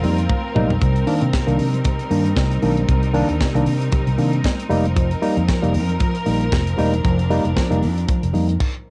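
Disco groove, danceable and driving with a light swing, cut from a longer piece: a tight funk drum kit with a high-tuned snare and dark cymbals sits up front, opening with a drum fill at 0.3 seconds, while a punchy fingered electric bass anchors the low end. A barky tine electric piano, lightly overdriven through a combo amp and tinged by cassette tape, plays accompaniment over F7sus4 and Cm7, with a distant, lush studio string section holding sustained chords and very quiet, thick-skinned congas tucked beneath. The home cassette recording carries a light reverb, and the groove stops at 8.6 seconds.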